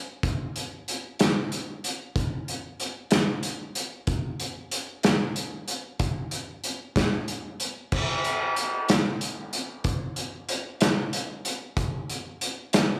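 A loose, up-front indie rock drum kit, with a tight kick, medium-tuned snare, hi-hat, dark crash cymbal and a pumping small-room sound under moderate studio reverb, plays a jangly, upbeat 6/8 groove at 62 BPM from 0.2 to 12.9 seconds, moving from one section into another at 7.9 seconds in this short cut from a longer piece.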